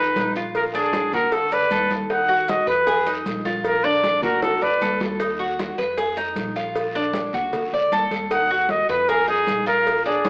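A breathy, whispered trumpet with vibrato sings up front over a metallic, picked Cuban tres and a woody, thumpy pizzicato upright bass, joined at 0.2 seconds by ringing congas, round low-tuned cowbell and bongos, a raspy guiro and faint grainy maracas in this sultry, nostalgic Cuban son and guajira fragment at 155 BPM, where a drum fill arrives at 4.4 seconds, the trumpet returns at 8.3 seconds, and the whole mix sits in a large-studio reverb with a worn, warbling old-cassette tape drift and an AM radio tone.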